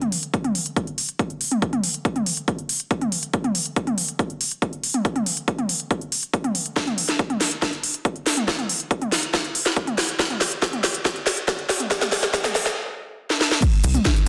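This excerpt from an uplifting trance piece opens with a techno drum kit, its crash cymbal, hi-hat, shaker, snare and toms overdriven and up front, with a cracking snare and smooth hats that pump against the sidechain. An overdriven electronic kick drum joins at 0.3 seconds, heavy and layered, driving a straight 4/4 pulse at 140 BPM. The passage is a build-up with a bittersweet, soaring mood, and drum fills run from 6.8 to 12.8 seconds and again just before the close. Only at 13.8 seconds does a tight sequencer bass arrive on C2, a punchy, mellow sawtooth and square-wave tone with ring modulation and a fast, decaying filter pluck, pumping with the sidechain. A moderate digital room reverb lends ambience, and the master is dense and heavily limited in a modern style.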